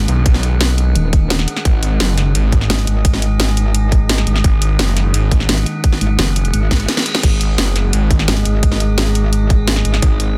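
Tense and mechanical, this dark technical drum and bass excerpt drives at 172 BPM in a straight 4/4, cut from a longer piece and set in a digital ambience. Two basses sit up front: a metallic wobble bass built from FM and sine tones, saturated and thickened with chorus, and a snarling distorted saw bass, detuned in unison with a moving notch, its overdrive giving it a growling bite. Behind them an eerie, warbling drone of sustained metallic chords swells in with a slow attack and a vintage, inharmonic FM character, softened by chorus, phaser, built-in reverb and sidechain pumping. The layered electronic kit keeps a tight, up-front kick and a cracking snare with hi-hat and crash cymbal, both set in studio reverb. At 6.7 seconds a drum fill arrives, joined at 6.8 seconds by a very quiet reverse cymbal that ends at 7.2 seconds.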